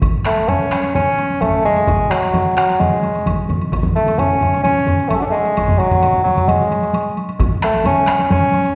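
This powerful, ceremonial passage from a Japanese traditional taiko drum piece opens with four taiko ensemble parts and a woodblock sounding together in a straight 4/4. Three of the taiko groups are struck with heavy sticks in a small room, one of them sitting in the background, while the fourth uses hard sticks and carries the livelier sound of a more open room. The woodblock adds a woody click from the back of the mix. At 0.3 seconds a clear bassoon enters up front as the solo melody voice, played in a classical style across a range from F#3 to A4 and standing well above the drums. A resonant hall reverb gives the whole recording the spacious feel of a church or concert hall. One taiko part drops out at 7.5 seconds and two more at 8.4 seconds, leaving the bassoon, woodblock and a single taiko group to carry on to the end of the 8.8-second fragment.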